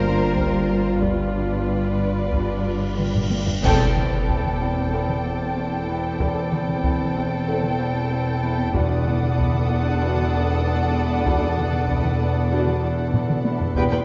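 Set in a straight 4/4 at 94 BPM, this cut from a longer suspense film score moves with an uneasy, eerie pulse, as a taiko ensemble played with hard sticks enters in the background at 0.4 seconds. Muted, con sordino violins carry a veiled, vibrato-laden melody over a second violin line and a background viola accompaniment, while a mellow French horn section holds sustained chords and a ringing, fingerpicked Celtic harp repeats a low riff. Beneath them, a muted double bass section and cello section share the bass, and a deep, ominous, warbling synth drone rumbles with its own reverb. Dark cymbal swells, clash cymbals and concert bass drum gather early, joined by a huge, bright cymbal swell and impact that crash in with a full-band accent at 3.6 seconds, where a faint high violin texture also appears. Soft-mallet timpani with calf heads add round, very quiet strokes from 8.8 seconds, over chords moving from Fsus4/G and G7 to C6/E and D/E. 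The production is dark and warm, set in a moderate concert hall reverb that lends the strings a lush depth.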